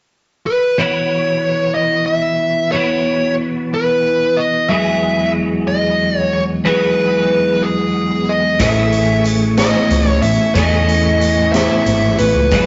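A rough rehearsal-room recording with tube saturation, a muffled top and wet stone-room reverb frames this hypnotic, trippy psychedelic rock excerpt in 6/8 at 61 BPM in B mixolydian, where a dark fuzz lead guitar carries the melody from 0.5 s over a bright, twangy twelve-string electric guitar riff played through a rotary speaker and entering at 0.8 s, both up front, until at 8.6 s a distant, gritty garage drum kit with a boomy kick and high-tuned snare, a round, punchy hollow-body bass, a reedy combo organ with light vibrato in the background and a very quiet, jingly tambourine join over an Amaj7 chord.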